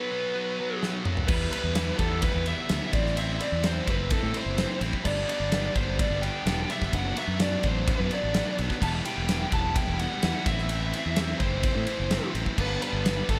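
Moody and bittersweet, this indie rock excerpt opens with a smooth, dark overdriven lead guitar soloing over a thick, bright, double-tracked fuzz guitar riff, a big rock drum kit with a fat snare and punchy kick breaks in with a fill at 0.8 seconds, and a growly fingered fuzz bass joins at 1.3 seconds as the minor-key chords roll on under the lead's plate reverb and analog delay.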